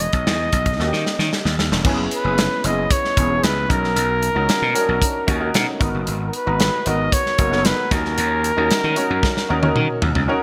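Polished 1980s jazz-funk pop with a slick, nocturnal mood, heard here as a short cut from a longer piece. A breathy flugelhorn carries the melody with a soft attack, vibrato and scooped notes, its whispered, intimate pop-style solo trailed by delay. A warm baby grand piano, present and touched with analog chorus, supplies the accompaniment through chords such as Emaj7, F#7sus4, Bmaj9 and G#m7. Up front, a gritty, growly slap bass with overdrive gives the low end a direct, amped bite. The acoustic studio drum kit sits mid-forward with a punchy kick, a medium-tuned snare, bright cymbals and toms, all wrapped in gated reverb, and it plays fills from 0.8 to 1.9 seconds and again from 9.2 seconds. Light small-room ambience and bright, digital 1980s-style production give the whole a glossy sheen.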